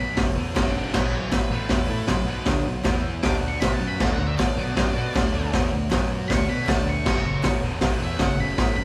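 Menacing and swaggering, this garage rock fragment in F# minor at 157 BPM rides a bright, double-tracked fuzz guitar riff and a round, dark fretless bass, while a saturated small-room drum kit with a high-tuned snare and boomy kick sits up front, a picked octave-fuzz lead guitar solos throughout over changes from F#m through B5, E5 and D5, a reedy overdriven combo organ holds very quiet sustained chords, and faint, crisp group handclaps join at 0.6 seconds, the band captured live in one lightly reverberant room.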